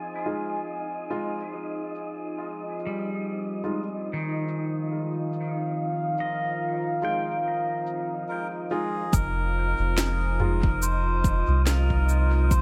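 A hazy echo-chamber wash surrounds this meditative ambient dub excerpt in F minor at 71 BPM, built on a slow 4/4 swing. A dark, detuned pad with chorus holds sustained chords over an airy, wind-like tuned noise layer, while a twangy pedal steel guitar plays arpeggios through dub echo. From 0.3 seconds, a tape-toned electronic kit with a woody snare, cabasa and filtered toms joins low-pass filtered upright piano stabs in the background; a reedy, nasal melodica melody enters at 8.3 seconds, and at 9.1 seconds a round, saturated sub bass and a deep kick arrive as the harmony moves from Fm7 to F7(no3).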